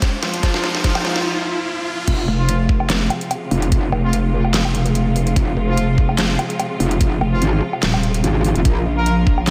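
Heavy wobble dubstep at 146 BPM in F minor, this piece is cut from a longer work and moves with a half-time feel and a light swing, sounding aggressive and dreamy at once in a lush hall reverb. It opens with a build-up: an electronic riser and a drum fill lead into a short break at 1.3 seconds, while a soft supersaw with delay carries a smooth, detuned melody. Underneath, a bright studio string section holds intense, vibrato-rich chords, shaped by sidechain pumping and a low-pass filter. The drop lands at 2.1 seconds, when a metallic, FM-style wobble bass takes over, joined moments later by a pulsing, detuned pluck wobble bass, both saturated with chorus and overdrive and placed up front beside a knocking electronic kick. The kit adds a deep snare, metallic hats, crash cymbal, handclaps and woodblock, all re-recorded in a small room. A tight, classical-style brass ensemble punctuates the drop with clear stabs through delay, and the harmony stays on F minor until shifting to B-flat minor at 8.7 seconds.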